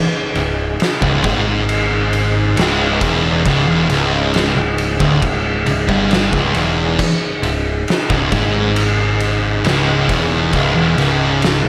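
Stoner and doom metal at a crawling 68 BPM in 4/4, this sludgy, ominous passage in C# minor sits on a single C# minor chord throughout and is cut from a longer piece. A mellow, flute-like tonewheel organ opens alone, holding sustained chords with a touch of key click through a slow rotary speaker. At 0.4 seconds the rest of the band crashes in: two thick fuzz guitars play a distorted, picked riff low in the register, one darker and one warmer in tone, both sitting in the background. A growling picked electric bass, overdriven and direct, adds weight beneath them. Up front, an oversized low-tuned drum kit plays with a punchy kick, fat snare, and dark crash and ride cymbals, its gritty, saturated sound set in a bright stone room. Light studio reverb gives the whole heavy mix a sense of space.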